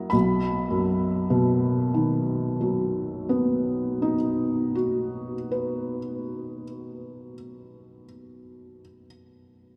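Dreamy and nostalgic, this short romantic nocturne for solo piano unfolds at a slow 32 BPM in 4/4, its rubato feel letting time stretch freely. A felt-muted upright piano carries everything from 0.0 to 9.8 seconds, spanning B1 to B5 in B major with tuning set to A4 = 441 Hz. Its tone is mellow and intimate, placed up front, with the noise of the action clearly audible. The harmony rests on a B chord heard from 0.1 seconds. The playing sits in a vast, echoing space, where a cathedral reverb with a 5.2-second decay lets each note hang in the air. Cut from a longer piece, the fragment feels like a private memory glimpsed through a haze.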